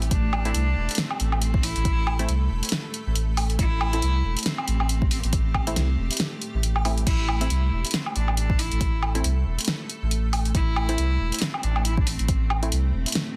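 Deep dubstep with a heavy, brooding mood, this short cut from a longer piece rides a half-time groove with a swung sixteenth-note lilt over a single sustained chord. Up front, a round, soft sub bass and a fat-snared electronic kit of crash cymbal, hi-hat, snare and woodblock anchor the low end alongside a deep, layered kick, both drum parts carrying a tape-tinged, small-room character. Further back, a muted, detuned sawtooth chord stab with chorus, a filter sweep and dub echo punctuates the groove, while a granular pad spreads a cloudy, blurred, bright haze of chords with its own built-in reverb. Over this, a solo bowed cello played sul tasto and treated with dub echo carries a pure, floating, distant melody from 0.1 to 12.7 seconds. The mix is dry and densely limited, with the bass and drums dominating.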